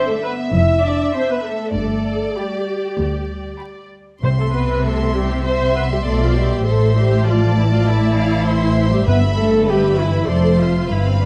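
A quick, spirited classical-period movement for symphony orchestra opens in C major at 99 BPM in a straight 4/4. The violin section carries a smooth, even melody with vibrato, while a second violin line sits higher above it. A dark, expressive viola section fills in the accompaniment, and a mellow French horn section holds soft-edged chords in the background. Round, soft-mallet timpani strikes on calf heads mark the opening and return at 4.2 and 9.1 seconds. From 0.5 seconds a rich cello section, sliding between notes, joins a warm double bass section to anchor the cheerful harmony as it moves from G toward C and Am. The close, detailed sound sits in a moderate scoring-stage reverb with vinyl crackle, and the passage is cut from a longer piece.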